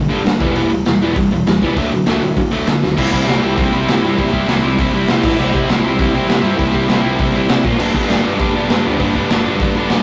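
A distorted, double-tracked electric guitar leads this rowdy, rebellious punk rock excerpt, its bright, picked riff sitting up front at a fast, straight pace. Alongside it, a raw garage drum kit hits up front with a boomy kick, a medium-tuned snare, hi-hat and crash cymbal, sounding gritty and saturated in a stone room with a rolled-off top. A dark, round picked electric bass sits in the background, amped and low beneath the guitar and drums. The harmony moves from E minor to D before a drum fill at 2.8 seconds sets up a new section at 3.0 seconds built on C, with quick stabs of A5 and Bb5 between returns to C and G. The rough rehearsal-room sound, with tube saturation, light reverb and a dulled high end, gives the whole take a loud, unpolished edge, and it is cut from a longer piece.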